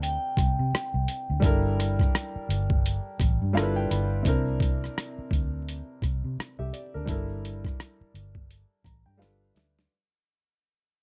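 A swung 85 BPM groove in 4/4 opens this excerpt, its sixteenths swung, with a boom bap sampler-style drum kit up front: a thumpy kick, a medium-tuned snare, rim clicks and hi-hat, all compressed, pitched down and gritty. Beneath it a vintage muted fingered electric bass sits dark, round and punchy, amped and foam-muted, while a clear concert grand piano with deep low end carries the neo-soul harmony through C9, Gm69 and G13 in G dorian. A vibraphone struck with medium hard mallets, motor off, sings a brief metallic, ringing melody through a boxy small room and tape echo, falling silent at 3.5 s. The piano adds fills at 3.2 s and again near the close, and the R&B piece begins fading out at 4.2 s as the drums play a fill from 9.2 s. Vinyl crackle and a dry, close sound give the whole an introspective, late-night feel.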